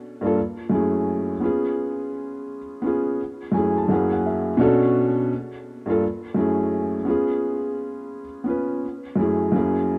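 A rough home demo on cassette tape, with light reverb and a small room's ambience, carries a melancholic, reflective hip hop fragment at 85 BPM in 4/4, swung on the sixteenths and set in F# minor. A solo felt-muted upright piano, soft and boxy with audible action noise and a thin, intimate felt tone, sits up front through a low-pass filter and plays from 0.2 to 10.0 seconds across F#2 to A5. It moves through F#m9, C#7, F#7, Bm7 and Gm9 before settling back on F#m9, in a short passage cut from a longer piece.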